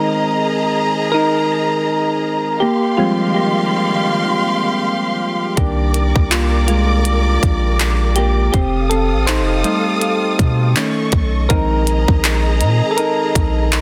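A slow 81 BPM groove in 4/4 with a 58% swing on the sixteenths gives this contemporary R&B excerpt a relaxed, late-night sway and a feeling of longing. Soft, round electric-piano-like synth keys carry the featured part from the start, their mellow tone softened by chorus and a filter sweep, while a lush symphonic string section holds bowed chords beneath them with vibrato and portamento, pumping gently against a sidechain. At 5.6 seconds a glitchy electronic drum kit arrives with a tight kick, clicky hi-hats and handclaps that sound re-recorded in a small room. Alongside it enters a deep, sine-like 808-style bass whose long, decaying notes sit up front. The harmony drifts through jazzy extended chords such as Eb69, Cm9 and F7 before settling back on Bb7sus4. Light reverb and a digital ambience surround the parts, and the master is dense and heavily limited, until the piece cuts off at 13.8 seconds.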